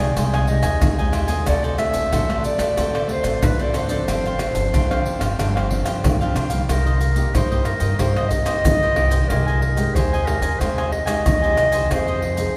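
Yearning yet lively, this excerpt of samba and choro in C minor moves at 92 BPM in a straight 4/4, with a warm, distant classical-style clarinet carrying the melody and taking a solo from 6.7 seconds as the harmony shifts from Abmaj7/C through D7 and G7sus4 to Cm7 and Fm7. Crisp picked cavaquinho and fingerpicked nylon-string guitar fill out the accompaniment, while a woody, thumpy pizzicato upright bass on gut strings anchors the low end. Maracas, deep surdo, pandeiro and tamborim sit up front, played with soft hands, and the whole is steeped in a long cathedral reverb that gives the church or concert hall a roomy glow.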